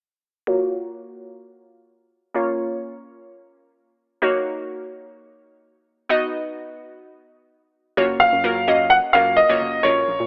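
A glassy, crystalline wavetable pluck opens this carefree, euphoric dance-pop excerpt at 128 BPM in F# major, its chorused, low-passed chords moving through F#maj7, A#m, D#m7 and B under a filter sweep until a hollow, dark organ-like FM bass arrives at 8.0 seconds and a clear, intimate grand piano melody with audible action noise steps up front at 8.2 seconds, all set in light studio reverb with a gritty cassette-tape, telephone-like coloring.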